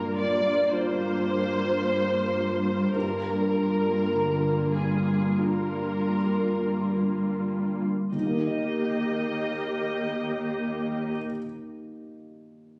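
Uplifting and moving, this slow, rubato cinematic film-score fragment in Eb major (41-57 BPM, slowing through the first 8.1 seconds) sets an up-front, veiled con sordino violin section's vibrato melody over dark muted violas, a softly bowed cello bass and a mellow, intimate felt-muted upright piano as the harmony moves from Gm7 to Eb, with the piano lingering alone from 11.1 s; it is captured on a phone in a room with light club reverb.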